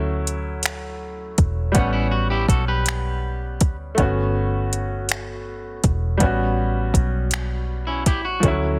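A slow, straight six-eight sway sets this tender R&B fragment, cut from a longer piece, in motion. The smooth electronic drum kit sits up front with finger snaps, metallic hi-hat and a soft kick, its overdriven edge lending grit. Underneath, a vintage muted fingered electric bass plays dark, round and punchy, while a clear baby grand piano carries the accompaniment with a natural, short-sustained tone through Dmaj9, A13 and Gmaj9#11 harmonies. An electric guitar at the edge of break-up adds a twangy second line, entering at 1.7 s and returning near the close at 7.9 s. The dry, dense, heavily limited modern master keeps the parts close and immediate.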